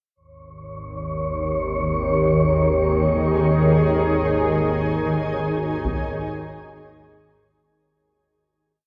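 Dark ambient drone, ominous and vast, in which a nasal, chorused organ-like drone, a blurred, evolving granular cloud pad of slowly shifting chords and an airy, breathy wind-like tuned noise texture holding a high note all rise together near the start and fade from 4.0 seconds, while a very quiet bronze singing bowl rings metallic, meditative arpeggios from 3.2 seconds and a distant, filtered taiko ensemble strikes briefly at 5.8 seconds, the whole piece bathed in huge reverb and worn, warbling old tape.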